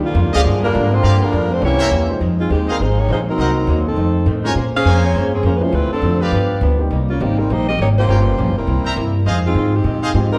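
Swinging at 204 BPM in 4/4 with a lilting swing on the eighth notes, this brief cut from a longer jazz piece in F minor feels sultry and quick on its feet. An up-front upright bass, woody and thumpy with gut strings played pizzicato, anchors the low end throughout, while a tight saxophone section with a dark, lightly vibrato-tinged tone carries the melody from 0.1 seconds. A brilliant trumpet section adds soft-attacked stabs over the top, and a clear, vintage-sounding trombone section supplies a second line in the background only until 2.1 seconds. Behind them, a clean, compressed hollow-body archtop guitar, miked and amplified, and a natural-sounding grand piano fill in the accompaniment, with the piano offering only brief touches at the very start and around 2.1 seconds before settling in from 4.4 seconds. The harmony moves through rich extended chords such as Ebmaj9, C7b9 and Bbm9, and a wet large-studio reverb places the band further back in the room.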